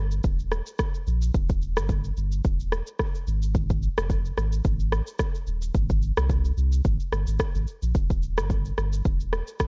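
This short fragment sounds like worn, warbling cassette tape: the pitch drifts unsteadily, the top end is cut off above 7.7 kHz, and the room is dry with little reverb. It is a romantic, joyful afrobeats groove in Eb major at 109 BPM in 4/4, with a 55% swing on the sixteenths that gives it an easy, lilting feel. A round, sine-like sub bass sits up front and runs from the opening moment to 9.4 seconds, its fast attack and sustained notes moving between Eb1 and C2. An electronic, polished afro-pop drum kit enters at 0.1 seconds and plays until 9.7 seconds, pairing a deep kick with rim clicks and shaker, also placed close and forward. Together the bass and drums form a sparse, intimate pulse, made hazy and nostalgic by the aged tape colour.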